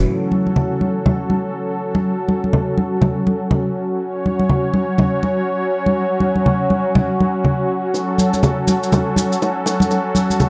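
A smooth, detuned sawtooth pad with chorus and tremolo holds sustained chords up front in this earthy afro house excerpt, joined almost at once by bright, close congas, while tight, high-tuned bongos in the background and grainy, mellow maracas enter at 7.9 s, and the mix carries a moderate plate reverb and gritty transformer saturation.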